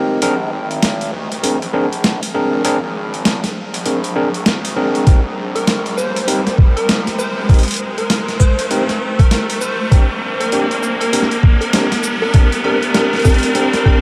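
Glitch hop with a gritty, swaggering build-up, where overdriven electric piano stabs carry vintage sampler grit, sidechain pumping and tape echo over a high-tuned-snare boom bap kit and a saturated synth bass sitting in the background, an electronic riser sounds throughout, and a thumpy, up-front kick enters at 5.1 seconds before a punchy, detuned unison lead arrives at 5.6 seconds, all soaked in huge, dreamy reverb in this excerpt cut from a longer piece.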